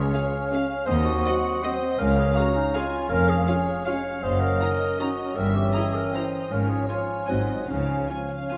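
A sweeping, elegant orchestral ballroom waltz in Db major at 159 BPM in 3/4, with uneven beats and a rubato feel, opens on a mellow, distant clarinet, an airy, hollow flute ensemble, a focused studio violin section and a light-vibrato oboe, all carrying second lines, over a smooth-topped bassoon and a bowed cello and double bass section anchoring the bass. By 0.1 s a chamber violin section sings the melody in the background, joined by a very quiet, woody viola section and dark, roomy French horns holding sustained chords. Scoring-stage reverb bathes the ensemble until this cut from a longer piece ends at 8.6 s on a return to the home chord.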